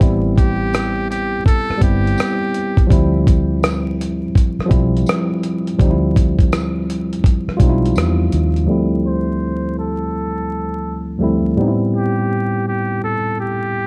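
A buzzy, breathy trumpet with a metal mute carries the melody in this hazy, reflective lo-fi hip hop excerpt, playing a brief phrase near the start and returning at 9.1 seconds during a filter sweep. Beneath it, a worn, slightly out-of-tune tine electric piano with cassette-tape coloring sits up front over Am9 and Dm11 chords. It is joined by a round, punchy, foam-muted bass, a gritty, compressed sampler-style kit with a thumpy kick, rim click and swung hi-hat, and a jingly tambourine in the background; bass and drums stop at 8.7 seconds, leaving piano and trumpet amid vinyl crackle and a dark production with light reverb.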